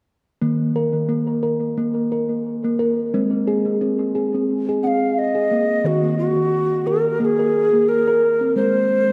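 A lightly swung 4/4 pulse at 88 BPM carries this meditative, hypnotic world piece in Eb dorian, cut from a longer work, where a round, ringing steel tongue drum struck with firm rubber mallets plays arpeggios with tape echo from 0.4 seconds, joined at 4.8 seconds by a breathy, hollow cedar flute with chiff and vibrato carrying the melody, all soaked in a dreamy plate reverb.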